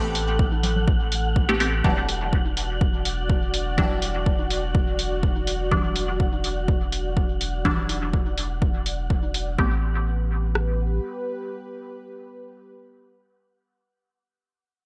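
A punchy, overdriven deep house kit sits up front in this meditative, deep dub techno excerpt, its kick drum and rim click carrying a small room reverb. Beside it, a muffled, pitched-down electronic hi-hat with a compressed, sampler-style edge runs from 0.1 s, while tape-coloured congas sit in the background with dub echo and pumping. The filtered dub chord stab is the most striking melodic element: detuned sawtooth and pulse tones with a plucky filter, short decay and a phaser, soaked in dub echo and moving between Am9 and Em9. Underneath, a dark, full-bodied analog pad holds slow-attack chords with chorus, and a round, soft sub bass carries a filter sweep until 9.6 s. An airy, breathy wind-like noise texture with long release hovers high above until 9.6 s, when the piece settles back onto Am9 in a bright, lightly reverberant 1980s-style digital sheen.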